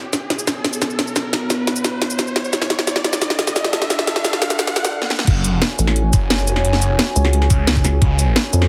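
Dark technical drum and bass at 175 BPM in F# minor, mechanical and tense, opens with a moody, detuned analog pad under a filter sweep, an electronic riser and a drum fill of cracking snare, metallic hats, shaker and crash that build to a drop at 5.3 seconds, where a knocking, tape-warm kick arrives with a swirling, thick phased saw bass that hits up front, joined at 5.8 seconds by a nasal, wobbling vowel-sweep bass, all set in light digital ambience with a heavily compressed, radio-like sound.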